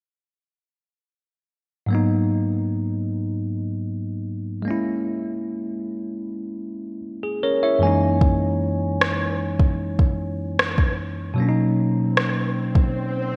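Moody and sensual, this contemporary R&B excerpt in G# minor at 76 BPM opens at 1.9 seconds on a clean, bell-like tine electric piano heard as if through built-in speakers, moving through lush extended chords such as G#m9 and Bmaj9 with a fill at 7.0 seconds, before a soft, tape-warm electronic drum kit of kick and rim click with gated reverb enters at 8.2 seconds, and an electronic swell arrives at 12.1 seconds, leading into a brief break, all set in a bright 1980s-style digital production with a lush hall reverb.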